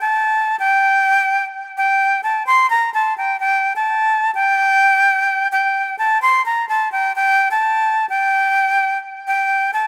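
A lone jazz flute opens this short hip hop fragment and carries it alone from 0.0 to 9.9 s, sitting up front in a rough home demo mix. Its tone is breathy and bright with a metallic edge, a crisp chiff on each attack, a slightly reedy color and a touch of vibrato. The line stays high, between G5 and C6, in G minor, with the tuning set a little flat at A4 = 438 Hz. A digital delay trails the flute, and light studio reverb adds a small sense of room. The 128 BPM tempo in 4/4 carries a half-time feel, giving the piece a hard-hitting yet melancholic mood.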